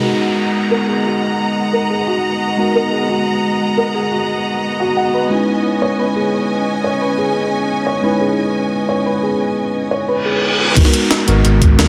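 A felt-muted upright piano plays soft, intimate arpeggios through a low-pass filter and dub echo, with a filter sweep running across it, opening this melancholic, rolling liquid drum and bass excerpt in G# minor at 176 BPM, over a lush bowed string section and a mellow tine electric piano treated with phaser, low-pass filter and delay as the chords move from G#m9 to C#m9. An electronic downlifter sounds at the start, and a reverse cymbal at 10.2 seconds leads into the drop at 10.8 seconds. There a thumpy, gritty kick, a compressed breakbeat kit with crash, hi-hat and a medium-tuned snare, and an up-front, dark sawtooth-and-square synth bass with portamento arrive under a moderate room reverb.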